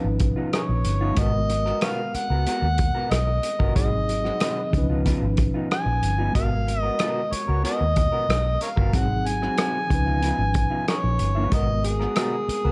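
Lush 1970s-style soul with a silky, cinematic mood, this short cut features an overdriven, gritty harmonica melody with light vibrato, tongue slaps and scooped notes up front over mellow tine electric piano chords, a slightly broken-up electric guitar riff with analog chorus, a round, punchy foam-muted fingered bass and a muffled, lo-fi vintage drum kit of hi-hat, tight kick and rim click, all in a dark production with light studio reverb.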